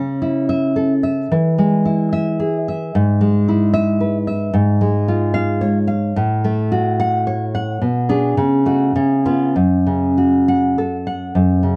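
A romantic solo classical guitar excerpt in a rubato three-time, this nostalgic, warm piece features a single fingerpicked nylon-string guitar, dark and full-bodied, sitting up front in light reverb as it moves through a searching chord progression to a resolved cadence near its 11.8-second close.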